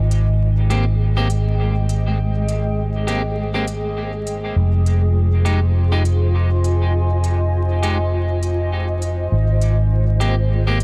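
A swung 101 BPM pulse in 4/4 carries this hazy, meditative ambient dub excerpt, where a growly, up-front fingered electric bass anchors a mellow, blurred granular cloud pad holding sustained Abmaj7 and Fm7 chords in its own built-in reverb, crisp overdriven electronic hi-hats sit far back with a large-room character, and from 0.7 s a bright, twangy, slightly broken-up electric guitar adds stabs trailed by dub echo, all under a light reverb and a prominent bed of vinyl crackle.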